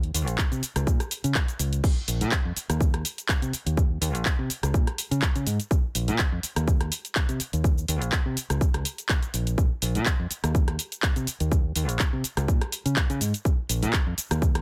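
Filtered disco house with a groovy, funky swing, cut from a longer piece. A fingered electric bass, direct and up front, pumps against the sidechain under a low-pass filter that sweeps through the opening 1.8 seconds before the drop lands, while a house drum kit of crash, handclaps, hi-hat, rim click and shaker breathes with the same pumping. A punchy, layered electronic kick enters at 0.4 seconds, its tape warmth and small-room re-recording shared by the kit, all in a dry, close sound.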